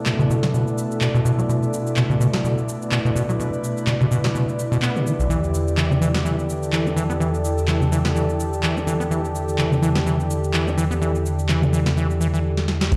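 Acid house at 126 BPM with a light 16th-note swing, hypnotic and driving, this short cut from a longer piece sets a squelchy, resonant saw acid bass riff with overdrive and tape echo against a booming, tape-warm analog drum machine of crisp snare, metallic hats, handclaps, ride, shaker and toms, while a smooth analog pad holds Bm7 and Em7 chords and an airy, breathy pad adds texture, both pads chorused and pumping with the bass to the sidechain, before a drum fill at 12.6 s brings a deep electronic kick and a barely audible hi-hat in at 12.9 s, all set in a bare room with spring reverb and large studio ambience.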